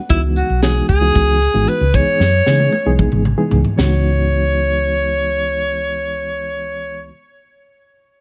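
A reedy electric piano with fast tremolo opens this intense, nocturnal jazz fusion cut in 7/8. A bright, up-front alto saxophone carries the melody with light vibrato, subtone and scooped notes over a dark, round hollow-body electric bass, while a crisp, airy drum kit with a high-tuned snare and punchy kick plays a fill from 2.2 seconds and drops out at 3.9 seconds, all set in a small room.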